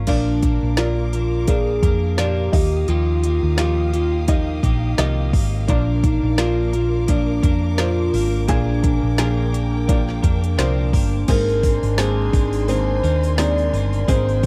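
This anthemic, uplifting slice of piano-driven pop moves with a gentle swing over a four-beat pulse, cut from a longer piece. A dark, slightly detuned upright piano with a boxy, short-sustained tone carries the accompaniment, while a bright, twangy twelve-string electric guitar plays a clean, picked riff beside it. Up front, a round, punchy hollow-body bass and a deep house kit with a deep kick, woody snare and smooth hats anchor the groove, crash cymbal included. A hollow, clarinet-like synth lead with chorus and vibrato sings the melody over lush bowed strings holding sustained chords. At 11.3 seconds the harmony shifts and a mellow French horn section enters in the background with a classical-style second line, all set in a dry, close 1970s-style studio sound with digital ambience.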